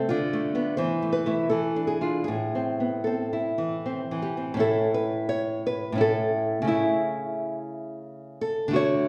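An up-front, fingerpicked nylon-string guitar accompaniment anchors this elegiac, solemn romantic duo in a rubato 3/4, while a second small-sounding, fingerpicked nylon-string guitar with fresh strings carries the melody above it, the two warm acoustic voices set back in a wet recital hall and moving into a new section at 4.6 s of this short excerpt.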